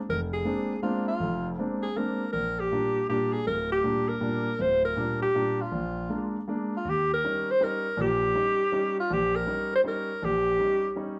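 Searching and hypnotic, this jazz excerpt moves at 160 BPM in 3/4 with a swung eighth-note feel, centred on Bb mixolydian before shifting to Eb mixolydian at 6.8 s. A breathy alto saxophone carries the solo melody up front, colouring its notes with vibrato and scoops. A clear grand piano accompanies close by, intimate and natural with audible action noise, and rings on briefly after the sax ends at 10.9 s, both heard from further back in a wet club reverb.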